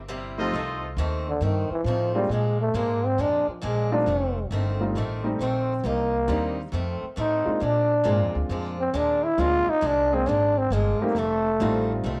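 A raspy, growling trombone carries the joyful solo up front from 1.3 seconds in this swinging big band jazz excerpt. A brief, smooth-topped trumpet section stab lands at 0.4 seconds, just after the bass and guitar enter. Beneath the solo, a woody, thumpy pizzicato upright bass, a boxy picked acoustic guitar with finger squeak and a short-sustained grand piano swing through seventh-chord changes, all set in light small-room reverb.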